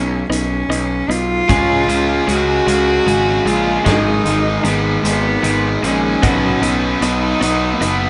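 A close, intimate cello carries a brooding melody with light vibrato and an airy sul tasto bow, over a twangy, compressed twelve-string electric guitar picking arpeggios in the background and a growly, fuzzy, overdriven picked bass. A big-room acoustic drum kit with a punchy kick joins at 0.3 seconds, and a raw, bright overdriven garage guitar riff pushes up front from 1.5 seconds. This cathartic quiet-loud alternative rock piece moves in a slow half-time 6/8 at 51 BPM through Badd9, C#, and G#m in a live-room sound with light reverb.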